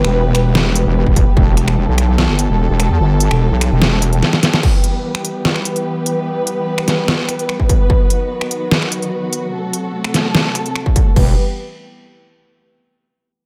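Aggressive and chaotic, this half-time heavy wobble dubstep excerpt opens on a drop, with a saturated, detuned wobble bass wobbling under dark, woody bowed strings whose lush sustained chords pump against the sidechain. The dubstep kit of deep snare, crisp hats, finger snaps and crash cymbal is joined by short bursts of a distorted electronic kick, and a drum fill at 4.3 seconds leads into a band accent as the bass drops out. The strings and drums carry the middle stretch until the wobble bass returns at 11.2 seconds, all set in a light digital ambience.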